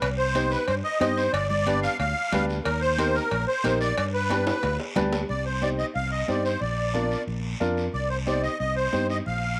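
A reedy, shimmering musette accordion carries the passionate melody up front in this danceable cumbia excerpt, over a growly, amped fingered electric bass, a woody upright piano with audible action noise, bright high-tuned congas in the background, ringing cowbell and timbales that drop out at about 5.2 seconds, near the end of a drum fill, and a raspy, distant guiro, all set in light small-room reverb.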